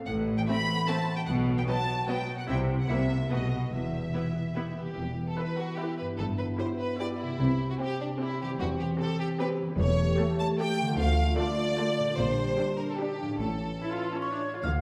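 A concert harp opens this magical, sneaky cinematic passage in E minor at 149 BPM in 3/4, its ringing arpeggios soon joined by a full string body: a lush, focused violin melody over a clear second violin line, distant viola accompaniment, and bowed cellos and double basses underneath, all with vibrato. At 5.0 seconds a dark, roomy French horn section adds sustained chords as the harmony turns through shifting chords. At 14.2 seconds a bell-like, slightly out-of-tune celesta and a hollow, mellow small flute group enter just as this cut from a longer piece ends, all set in a recital hall reverb.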